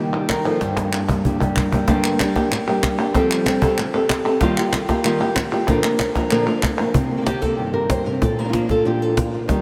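Flamenco in G minor at 189 BPM, mournful yet fiery, this short cut from a longer piece sets an up-front, fingerpicked flamenco guitar melody over a second guitar's thumb-plucked stabs, where finger squeak can be heard, with the stabs dropping out at 1.9 seconds and returning at 6.9 seconds. Crisp palmas hand claps run until 6.9 seconds, while a woody, close and dry cajon with faint snares plays a fill from 0.6 to 1.9 seconds. Both guitars carry a diffuse ambient delay, and a lush hall reverb soaks the mix in a dreamy wash as the chords move from Eb through Gm, Fadd9, Ebadd9 and Bb to Cm7 and Bb.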